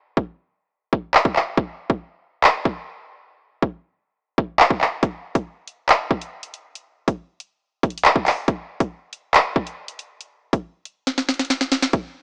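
This hip hop excerpt is cold and menacing, with an electronic drill drum kit entering at 0.2 s at 139 BPM in 4/4 with a half-time feel. The kit sits up front, with a hard-clipped kick, sharp snare, bright hi-hats and handclaps; it opens with a break up to 5.0 s and closes with a drum fill from 11.1 s. The sound is gritty and dry with light reverb, carrying a cassette-tape, small-speaker character.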